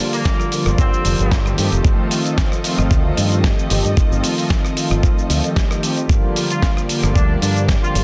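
A smooth, detuned sawtooth pad sits up front from the opening, pumping with the sidechain under chorus and delay, while con sordino strings hold veiled, vibrato chords in the background over a Gm7 to F7 progression in this cosmic, sensual nu-disco cut at 113 BPM with a light 16th-note swing. A punchy vintage trumpet section states the melody with light vibrato and delay, then returns at 6.5 seconds. Gritty, sampler-style drums with cabasa, hi-hat, rim click and a medium-tuned snare ride alongside a thumpy kick that arrives at 0.3 seconds, and an envelope-filtered fingered bass enters at 0.7 seconds, all under light reverb in a dense, heavily limited mix.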